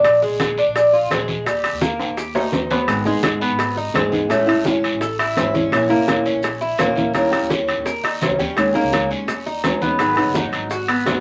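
A brisk, straight 4/4 groove at 169 BPM drives this danceable, sultry fragment of Cuban son and guajira. Ringing, vintage metal-shell timbales sit prominently over bright, low-tuned congas with a thin skin, while a raspy guiro scrapes close by and round, compressed bongos and grainy, mellow maracas fill in further back. A woody, thumpy gut-string upright bass plucks dark low notes beneath the up-front Cuban tres, whose metallic, partly octave-doubled strings pick out arpeggios from the start. After a drum fill closes at 2.9 seconds, a small, fingerpicked nylon-string guitar joins up front with audible finger squeak, as the chords move from A#7 and D# through G#m, Amaj7, A#dim and D#7. At 8.6 seconds a new section settles on D#7sus4 and G#m7, all set in a moderate club reverb with a layer of vinyl crackle.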